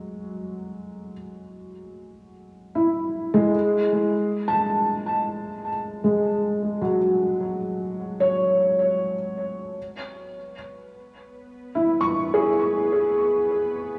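A dreamy, reverb-soaked mix with a long plate tail, studio ambience and a faint mains hum frames this short excerpt of weightless, luminous ambient music in free time. A felt-muted upright piano sits up front throughout, playing arpeggios from F#3 to C#6; its tone is mellow, intimate and a little boxy, with thin felt and audible action noise close to the ear. Lush chorus and tape echo spread the piano's notes into a shimmering haze. The harmony moves from F#sus2 to F#madd9 at 3.5 seconds, then to a rootless F#9sus4 at 9.8 seconds. At 10.3 seconds a quiet, string-like bowed drone enters beneath the piano, nasal and tense with a sawtooth edge, unison voices, a noise layer and gentle vibrato, swelling in slowly and sustaining in its own reverb between B3 and B4.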